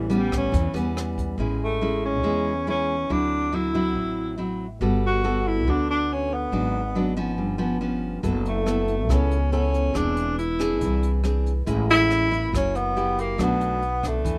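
A dry, intimate recording of a relaxed, sunny bossa nova excerpt at 140 BPM in A major, where a breathy, subtone tenor saxophone with light vibrato and scooped notes carries the melody over fingerpicked, full-bodied nylon-string guitar and a woody, growly pizzicato upright bass, while a brushed jazz kit with a boomy kick and rim click appears briefly at the start and returns from 8.2 seconds, the chords moving through Amaj7, D9, Gmaj9 and F#m7 to close on Bm7.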